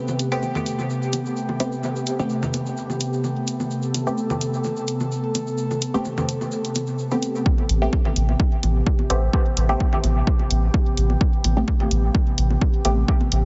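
A heavily compressed, radio-like sound with light reverb and a dulled top end frames this hypnotic, hazy dub techno excerpt in A minor at 128 BPM, swung slightly on the 16ths and resting on an Am9 chord. An airy, breathy pad with chorus and sidechain pumping sits up front alongside muted, detuned chord stabs coloured by phaser, cassette tape and dub echo, while overdriven electronic hi-hats, background bongos and congas with dub echo, and a grainy acoustic tube shaker that drops out at 7.4 s keep the groove moving. At 7.5 s a punchy, overdriven analog kick arrives, joined at 7.7 s by a deep, round sine sub bass on A1 that pumps up front in the mix.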